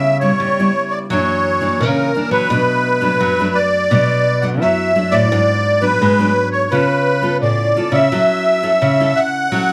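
Heard from further back in a wet studio room, this sunny, joyful samba-and-choro fragment puts a reedy, shimmering musette accordion up front, carrying a smooth, dark-toned melody from start to finish. Beneath it, a small, fingerpicked nylon-string guitar plays the accompaniment while a full-bodied, classical-sounding nylon-string guitar, also fingerpicked, supplies the bass line. The harmony winds through C#m7b5, F#7b13, Bm7, G#m7b5 and C#aug7 before settling on F#m7 near 8.1 seconds.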